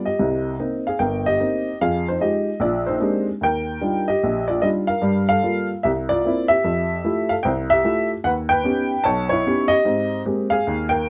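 A dark, woody upright piano, slightly detuned and up front with its action noise audible, plays this cool, swinging solo jazz excerpt in C minor at 149 BPM in 4/4 with a 65% eighth-note swing, moving through mellow extended harmonies from Cm7 and Fm9 to Ebaug7 and Abmaj9, captured intimately by close, detailed microphones in light reverb.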